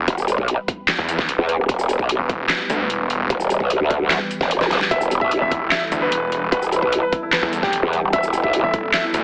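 A wobbling, formant-filtered growl bass sits up front in this aggressive, heavy half-time dubstep fragment, joined by a snarling, detuned sawtooth bass with a resonant moving notch and thick distortion. Overdriven electronic drums bring a punchy kick, a deep snare, metallic hi-hats, handclaps and shaker, while an evolving, warbling wavetable pad with phaser and sidechain pumping holds sustained chords in the background. After a drum fill at 4.6 seconds, a dark, mellow baby grand piano with audible action noise and digital delay enters at 4.9 seconds, all heard through a lightly reverberant, heavily compressed AM-radio sound.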